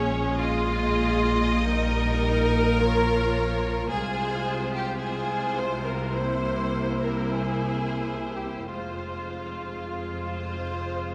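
An up-front, smooth second violin section carries the inner line of this elegiac, solemn excerpt from a slow romantic movement for string orchestra in F minor, moving in rubato at 42-55 BPM over Bbm7, Fm/C, C7 and Fm, while a distant, lush first violin section sings the melody above, a warm, even viola section supplies accompaniment, and a clear cello section joins a rich double bass section on the bass, all bowed with vibrato inside a wet scoring-stage reverb.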